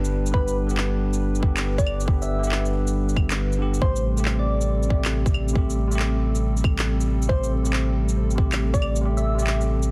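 Swung sixteenths at 138 BPM drive this wistful, ghostly future garage excerpt in A minor, where a tight, up-front electronic kick (from 0.3 s until it drops out at 9.0 s) and layered electronic shaker, handclaps and claves sit beneath a round dub sub bass with tube saturation, a bell-like tine electric piano with tape echo and a detuned, moody analog pad with chorus, all three pumping against the sidechain, while a gentle FM synth lead with chorus and delay floats over chords moving from G to Am7 amid light reverb, vinyl crackle and a dense, heavily limited master.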